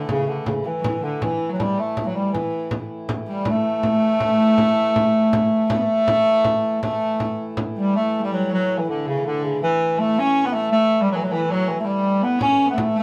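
A festive, ancient-sounding medieval dance in 6/8 at 107 BPM in A mixolydian opens with a distant, roomy bass clarinet carrying the melody up front, alongside a close, fretted viola da gamba with a gut-string tone and light vibrato on a second line, over a breathing, mellow pedal harmonium drone. A small, bright frame drum plays close and dry from 0.1 seconds, drops out at 7.8 seconds, and returns at 12.4 seconds. The band plays live together in one studio room with a wet ambience, in a passage cut from a longer piece.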